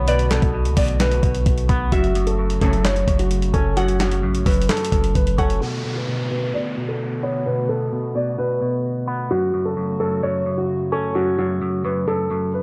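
A dark, boxy grand piano carries the melody over a bright, twangy envelope-filtered guitar and a warbling, nostalgic tape-like pad, setting an eerie, hard-hitting half-time trap mood in this fragment of a longer piece. Gritty, compressed sampler-style drums with a thumpy kick and handclaps sit up front beside a deep, boomy 808 bass, while a crystalline wavetable pluck with tape echo hovers in the background and reedy strings offer a brief stab at 2.6 seconds. At 5.6 seconds the drums, bass and pluck drop out, leaving the piano, guitar and pad under a filter sweep as an electronic downlifter falls away, all within a dark production with light reverb and digital ambience.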